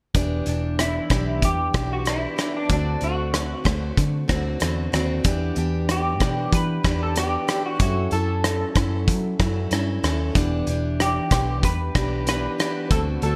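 A bright, 1980s-style digital mix with light reverb and a small room ambience frames this lonely, mellow bedroom pop excerpt in straight 4/4, moving through Em7, D7 and F#m7. A loose indie drum kit with a punchy kick, hi-hat and rim click sits up front under gated reverb. A dark, foam-muted vintage electric bass and a picked, plugged-in steel-string acoustic guitar with finger squeak, subtle chorus and warbly pitch drift carry the accompaniment, and from 0.8 seconds a slightly broken-up, lo-fi electric guitar through a small old amp takes the melody, colored by analog chorus and digital delay.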